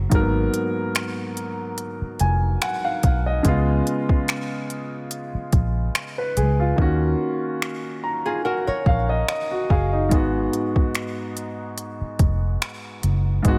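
Sensual and longing, this short contemporary R&B excerpt moves with a gentle swing as a warm, up-front grand piano comps and adds fills around 1.8 and 7.6 seconds over a dark, round, foam-muted electric bass and an overdriven electronic drum kit of finger snaps, soft kick and crisp hi-hats, the hats dropping out at 6.8 seconds while a small, woody nylon-string guitar slips in brief fingerpicked arpeggios at 8.3 seconds, all in a light reverb.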